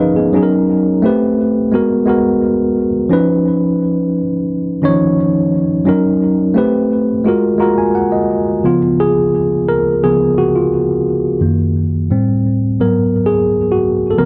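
A lone tine electric piano carries this smooth soul excerpt, its worn, slightly out-of-tune, mellow tone sitting close and up front, with tape echo and a touch of room reverb. It moves through rich chords such as F#6, Am9, G#m9 and C#9, then slips in a short fill at 7.3 seconds. From 8.6 seconds it takes a solo over C#7, F#6, Am7 and G#m7, where this cut from a longer piece ends.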